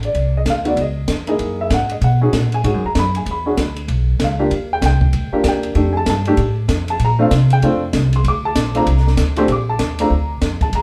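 Captured as a band playing live in one small room with moderate reverb, this relaxed, swinging small-group jazz excerpt in Bb major at 193 BPM sets a woody, up-front pizzicato upright bass and a dark, smooth cocktail drum kit with a high-tuned snare and punchy kick under an upright piano of short sustain, whose harmonies run from a rootless Bbmaj9 through Gb13 and F13 to settle on Bbmaj7 at 9.5 seconds.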